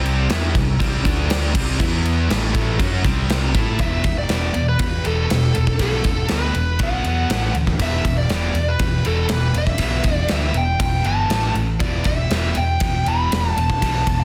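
Menacing and aggressive, this hard rock cut sets two crunchy rhythm guitars and a scooped, high-gain guitar riffing in the background over a growly picked electric bass and an up-front gated 80s drum kit with a punchy kick and bright cymbals; one crunchy guitar stops at 3.8 seconds as a dark, bluesy lead guitar enters with a distorted melody carried by analog delay, all within a dense, heavily limited master with moderate studio reverb.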